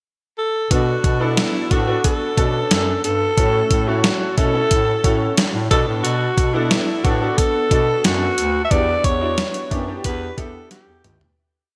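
A straight 4/4 groove from a 12-bit digital drum machine, with its thumpy kick, big gated-reverb backbeat and toms, drives this short, nostalgic and urgent 1980s-style pop piece. A raspy alto saxophone enters on a pickup at 0.4 s and sits up front with a hook-based melody full of vibrato, subtone and scooped notes, trailed by digital delay. Beneath it, a smooth, vintage grand piano plays syncopated close-voiced chords with grace notes through analog chorus, and a close-miked bass clarinet adds a syncopated pop-funk bass line, all under moderate plate reverb until a fade begins at 8.7 s and a drum fill arrives at 10.7 s.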